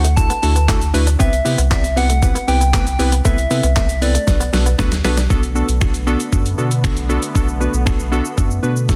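A driving, straight 4/4 groove at 117 BPM anchors this energetic dance-pop excerpt, built on a gritty, overdriven sampler-style kit up front with a thumpy kick, medium-tuned snare, hi-hat, shaker, handclaps and finger snaps, plus a drum fill from 4.3 to 5.3 seconds. Beneath it, a deep, round sine sub bass pumps with the sidechain alongside detuned square-and-saw analog keys that carry the harmony through Dadd9, Cmaj7, Amadd9/C and Bm7, shaped by a filter sweep and chorus. Over the opening stretch, a gentle, vintage FM lead with a sub octave carries the melody in a keys-like, warbling tone with chorus and delay until 4.8 seconds, while a twangy, clean direct guitar riff sits in the background under lush chorus and a faint, grainy egg shaker adds texture. At 5.3 seconds the guitar and egg shaker drop away and a smooth, wave-folded analog pad enters with soft-attack sustained chords that also pump with the sidechain. 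Light reverb sits over a dense, heavily limited modern master that keeps the whole mix loud.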